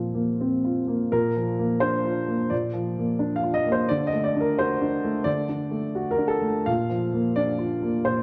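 A suspended Bbsus2 chord on a baby grand piano opens this short piece of hopeful, intimate neoclassical minimalism, settling onto a plain Bb chord at 1.1 seconds. The solo piano sounds natural and warm, placed up front, and ranges from Bb2 up to F5. Its rubato pulse lets the 4/4 metre breathe freely as the harmony moves to D at 3.9 seconds and returns to Bb at 6.7 seconds. A moderate concert hall reverb surrounds the instrument, and the overall production leans dark. Lasting just over eight seconds, this is a brief passage cut from a longer piece.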